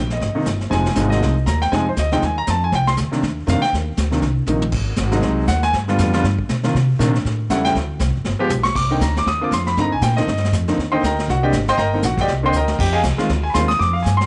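A brisk swing feel drives this moody small-group jazz excerpt, cut from a longer piece, with the brushed drum kit sitting distant and roomy under dark cymbals and a punchy kick, adding fills at 4.5, 8.5 and 12.5 seconds. A woody, growly pizzicato upright bass with a touch of transformer saturation moves through minor-key changes that lean on ninth chords and a flat-nine dominant. A clear, polished baby grand sits up front in accompaniment over two passes of the same section, all in a lightly reverberant studio space with a rolled-off top end.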